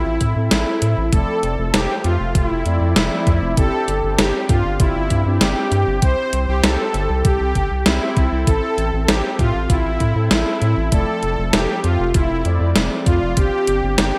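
Driving and cinematic, this 98 BPM synthwave excerpt in 4/4 sets a smooth, detuned supersaw melody with digital delay up front over a deep, round analog bass, while dark, brassy synth stabs with chorus, a filter sweep and vintage 12-bit sampler grit punctuate the mix, and a thumpy electronic kick and a gated 80s drum machine's hi-hat and gated-reverb snare enter at 0.2 s, all as the chords cycle through Am, Fmaj7, Gsus4 and C inside a lush hall reverb and bright 1980s-style digital production.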